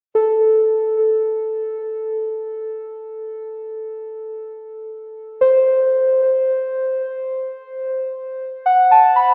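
Ambient music in free time, this brief fragment carries a reflective, melancholic mood in A dorian, resting on an A minor chord throughout. A single part, muted felt-like synth keys, plays alone from 0.1 to 9.3 seconds, moving between A4 and B5. The tone is soft, dark and intimate, with a fast attack that decays, and a noise layer adds grain beneath the triangle and sawtooth character. Chorus gives the keys a gentle shimmer, while a diffuse ambient delay lets each note trail into the space. The sound sits up front yet is bathed in a wet concert hall reverb with a 2.4-second tail, leaving a hushed, lingering atmosphere.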